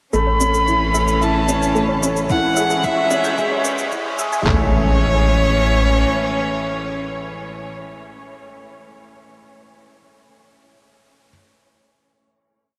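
Piano and strings electronica in A major at 111 BPM, this short, complete piece feels luminous and hopeful, building for its first 4.5 seconds before settling on a final chord. An up-front solo violin carries a smooth, motif-based melody with vibrato, while a chamber string section with a reedy, gut-string, period-style tone holds sustained chords that pump against a round, deep analog bass on the root. A woody, slightly detuned upright piano plays a looping arpeggiated riff through lush chorus and analog delay, and it rings on alone until 11.3 seconds. A very quiet, soft pluck runs its own drifting arpeggio under a filter sweep during the build, joined by a tape-warm shaker and, from 2.3 seconds, a muffled, pitched-down sampler kit with a thumpy four-on-the-floor kick and claps, as the harmony moves from A to C#m over A and back. A quiet riser and impact mark the transition, and the whole mix is dreamy and soaked in a huge ambient reverb, with lossy compression artefacts.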